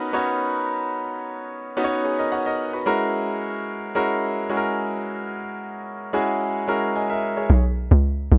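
Relaxed amapiano at 110 BPM in B major, in which a clear, intimate concert grand piano with audible action noise and long sustain carries polished Bmaj7 and F#9 chords under light reverb until 7.6 seconds, just as a tight, punchy FM log drum bass with a noisy, fast-attack thump lands up front at 7.5 seconds on a rootless A#m7 before this brief cut ends.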